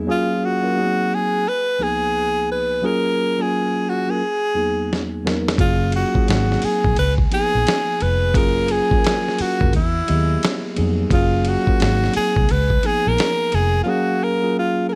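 A breathy tenor saxophone carries the melody from the very start, close-miked and intimate, its whispered tone and scooped notes sitting up front in a jazz-inflected solo voice. This is a sensual, relaxed slice of neo-soul R&B in F# major at 87 BPM, with a swung sixteenth-note feel and chords moving through F#maj9, G#7, C#13 and Emaj9#11. A mellow tine electric piano, clean and direct, supports the saxophone throughout. A dusty, sampler-style drum kit arrives with a fill at 4.9 seconds, gritty and compressed, with a thumpy kick, medium-tuned snare, hi-hat and ride placed up front, and a dark, round, foam-muted fingered electric bass joins at 5.6 seconds. The drums and bass drop out just before 14 seconds, leaving a brief pause in the groove, all set in light reverb and a digital ambience.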